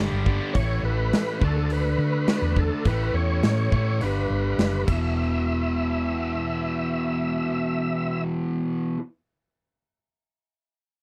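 Classic rock at 104 BPM in a straight 4/4, this short, driving cut from a longer piece has a swaggering feel, with a bright, compressed distorted guitar riff up front over a dark, round hollow-body bass and a big acoustic kit with a punchy kick and bright cymbals that drops out at 5.0 seconds. A second tight distorted guitar riff flashes by only in the opening half-second, and from 0.5 seconds a thick, gritty overdriven tonewheel organ carries the melody with key click, chorus vibrato and a slow rotary speaker. The chords move from G through Asus2, D5 and A, back to G and on to E5, all captured in a dry, close 1970s-style studio sound.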